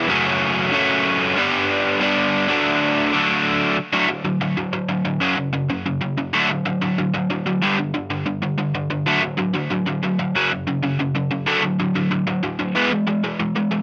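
A lone overdriven electric guitar opens this rowdy, upbeat punk fragment at 0.0 s, driving a straight 4/4 at 187 BPM with a tuning reference of A4 = 439 Hz. Its tone is dark and picked, double-tracked and compressed, sitting up front with a touch of digital delay, and it ranges from F#2 to D4. The opening moves through F#m, G and D before a new section arrives at 3.9 s, where the guitar moves through F#5, D and G5, circling back through D and F#5. Light reverb gives the room a modest sense of space around the single guitar part. The passage closes on an E chord at 12.8 s, ending at 13.8 s as though lifted from a longer song.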